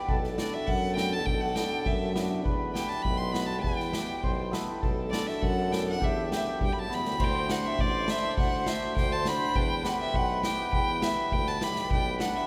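Festive yet soulful, this klezmer passage in 2/4 moves with a straight feel and is cut from a longer piece. A bowed violin carries the melody up front, its rich, focused tone colored by vibrato and a smooth top. Beneath it, a reedy, mellow accordion plays a second line, a hammered cimbalom adds a shimmering, ringing accompaniment, and a tuba supplies a distant, roomy bass in classical style. The street-band drum kit sits up front with a boomy kick, a medium-tuned snare and dark cymbals. A drum fill at 6.9 seconds leads into a new section at 7.2 seconds, where the harmony turns from Bm and Em to D. The ensemble sounds as if it is playing in a church or concert hall, wrapped in a long, wet cathedral reverb.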